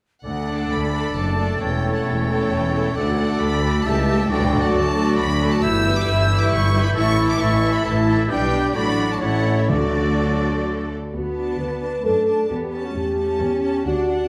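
Classical-period symphonic movement in D major at 133 BPM in a rubato 3/4, graceful and cheerful, with a rich, expressive violin section carrying the melody from D5 to E6 over mellow French horn chords, bowed cello and clear, intense double bass lines, and a viola accompaniment, while a second violin part, a pure-toned flute section and a vintage-sounding clarinet weave second lines in the background alongside a warm solo oboe. The winds fall away at 10.9 s, and very quiet, round timpani on D3 sound briefly from 9.7 s as the phrase settles onto D before the opening material returns at 11.1 s. A wet recital-hall reverb lends the ensemble a spacious glow in this fragment cut from a longer piece.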